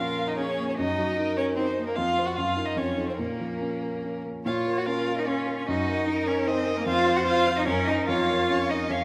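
Restless and dramatic, this quick classical-period movement for piano quartet in Bb minor moves at 149 BPM in a rubato 3/4, cut from a longer piece and running 9.0 seconds. A rich, bowed violin with vibrato carries the melody, while a second violin and a focused cello add smooth second lines beneath it. A dark, mellow concert grand piano sits up front with deep bass and audible action noise, and the ensemble rings in a wet concert hall, the harmony circling between Bbm, Ebm/Gb and F7 before settling on Bbm/F at 8.1 seconds.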